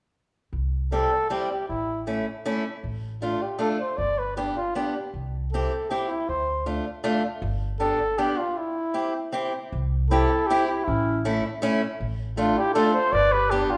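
A mellow, close-miked flugelhorn leads this bouncy, jolly alpine folk dance, singing a classical-style melody up front at 157 BPM in 3/4 with a straight feel in C major. Beside it, a fingerpicked acoustic archtop guitar sounds bright and boxy, its fresh strings carrying a touch of finger squeak. A pizzicato upright bass anchors the bottom with a woody, thumpy tone from 0.5 seconds. After a short break at 8.6 seconds, the phrase returns and a dark clarinet enters at 10.1 seconds, sitting distant and roomy as a classical-style second line. The band plays live together in one room, bathed in a large, wet studio reverb, and the passage is cut from a longer piece.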